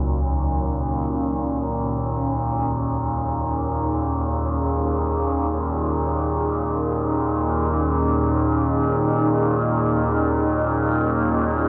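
A nasal, overtone-sweeping drone sits up front in Eb minor, joined from the start by a deep, detuned ambient pad that fades in across the full 11.7 seconds and by bronze, gamelan-type bossed gongs whose soft, tape-echoed arpeggios ring out until 4.8 seconds, all in free time within a huge, wet reverb that makes this cut from a longer dark ambient drone piece feel cavernous and unsettling.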